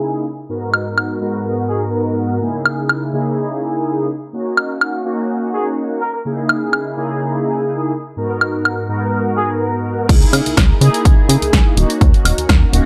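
A mellow, detuned synth brass carries this funky, nostalgic excerpt of filtered disco house at 125 BPM in C# dorian, its chorused, phased chords pumping beneath a filter sweep across the first 10.1 seconds. A dry, overdriven analog drum machine supplies hi-hat, snare, woodblock and crash with a light swing on the 16ths, while a bright horn section adds brief, tight vibrato phrases. At 10.1 seconds the drop arrives with a plucky, wave-folded analog bass and a punchy, tape-warm electronic kick, all set in light reverb.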